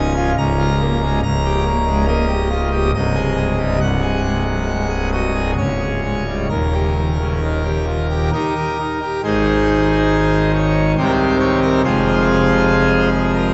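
Classical chorale-style music for solo pipe organ in Ab major, this serene, reverent excerpt moves at a flexible 69 BPM in 3/4, the full organ with mixtures sounding majestic and brilliant, its baroque voicing and chiff placed up front and spanning C1 to Bb5. The sound is dark, soaked in a wet cathedral reverb with a 5.8-second decay, as the harmony travels from Bbm/Db through Eb7/Db and Ab/C toward Eb. At 9.2 s a new section opens on Ab before turning to Cm and Fm, and the passage breaks off at 13.5 s.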